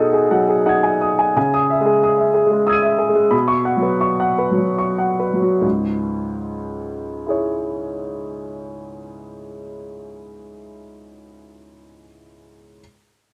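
A clear, woody upright piano sits up front, playing alone from C#2 to D#7 in this reflective, melancholic fragment of neoclassical minimalist music in C# minor, tuned to A4 = 442 Hz, set in a rubato 3/4 between 70 and 93 BPM that slows from 0.3 to 5.6 seconds as the harmony moves through G#m7/B, C#madd9 and Bsus2 before settling on C#m, all bathed in a moderate spring reverb.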